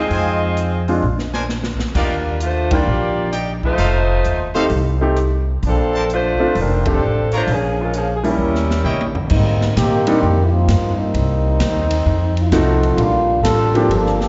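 Brassy and energetic, this big band swing excerpt moves at 130 BPM in Bb major with a firm swing feel, heard as a live gig through the venue's PA with recital hall reverb and a rather dulled top end. A dark, vintage-toned saxophone section carries the melody up front with light vibrato and slapback echo, while a brilliant, tight trumpet section adds stabs behind it, and the band hits accents at 2.6 and 6.8 seconds. A clear baby grand piano accompanies with intimate, natural tone and audible action noise, and a woody, growly pizzicato upright bass sits up front beneath the harmony, which moves through rich chords such as Ebmaj9, Bbmaj9 and Eb7b9. The swinging drum kit, airy and polished with a punchy kick and medium-tuned snare, drives the groove and plays fills at 1.0 and 8.4 seconds. At 9.3 seconds the saxophones and trumpets drop out and a close-miked trombone section takes over with a clear, light-vibrato solo line over piano, bass and drums, before the piano stops at 13.9 seconds.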